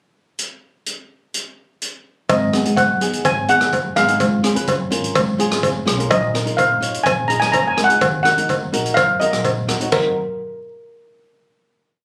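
A street-band drum kit sets up a straight 4/4 calypso groove at 126 BPM, playing alone from 0.4 s with a boomy kick, rim click, hi-hat and shadowy crash cymbals, all mid-forward with a rolled-off top. At 2.3 s a lead steel pan struck with hard rubber sticks enters up front, metallic and shimmering through plate reverb, spinning a motif-based melody, while a close cowbell pattern and a woody, growly pizzicato upright bass on steel strings arrive with a syncopated figure. A fingerpicked flamenco guitar follows moments later with dark, rhythmic triad chords. Set in Eb minor, this short, brooding piece moves through Abm7, Db and Bb7sus4 before settling on Ebm for a final chord. The sound has the feel of a phone held up in a small club, with moderate room reverb around the band.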